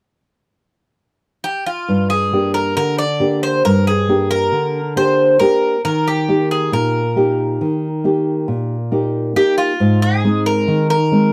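A bright, metallic Greek bouzouki with double strings opens this reflective, melancholic Greek folk excerpt in 9/8 at 1.4 seconds, picking an up-front melody, and at 1.9 seconds a warm, thumb-plucked classical nylon-string guitar joins, also up front, with accompaniment over chords moving from Gm to Eb to Ab, all caught in a dry, close 1970s-style studio sound with light reverb.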